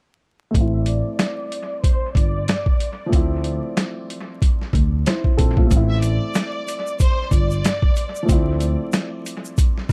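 Boom-bap hip-hop with a dark, reflective mood and a swung sixteenth-note feel, cut from a longer piece. A gritty, compressed, pitched-down sampler-style drum kit sits up front with a thumpy kick, a medium-tuned snare and hi-hat, while a woody pizzicato upright bass with steel strings holds the low end. A dark, mellow upright piano moves between Am and Dm7 chords; its intimate tone, audible action noise and short sustain are coloured by cassette tape and filtering. A lush, focused violin section enters at 0.7 s with a bowed, vibrato-laden melody, filtered and trailed by dub echo, and stops at 8.3 s. At 5.7 s a grainy, bright egg shaker joins in the background, and the small-room mix is echo-heavy with a layer of vinyl crackle.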